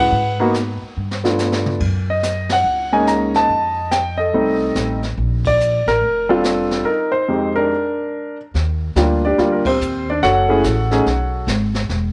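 This jazz piano trio excerpt has a warm, playful mood and a swing in four. An intimate concert grand carries the melody up front, its deep bass register and audible action noise giving it a natural, close-up character, touched by a slapback echo. Beneath it, a woody pizzicato upright bass with steel strings holds the low end, while a brushed drum kit sits in the mix with dark cymbals, a high-tuned snare, a boomy kick and a rolled-off top. The drums play a short fill at 1.0 seconds, the band hits several accents together, and a break arrives at 6.9 seconds, while extended harmonies shift throughout. The piano drops out at 11.5 seconds, leaving bass and drums to close out the fragment in the snug ambience of a small room.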